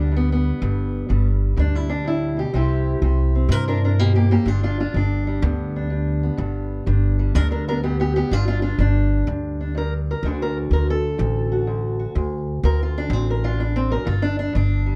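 A dark, warm production with a light touch of reverb places both instruments up front in this short cut from a longer piece. It is a soulful, rollicking acoustic country blues for a small duo, with a swing feel on the eighth notes. A boxy, parlour-sized steel-string acoustic guitar, fingerpicked, carries the melody and takes the spotlight as a solo for the full 15 seconds. Beneath it, a pizzicato upright bass with a woody tone anchors the low end from start to finish. The harmony moves from G to C, back to G, and on to D before settling onto a G5 chord near the close.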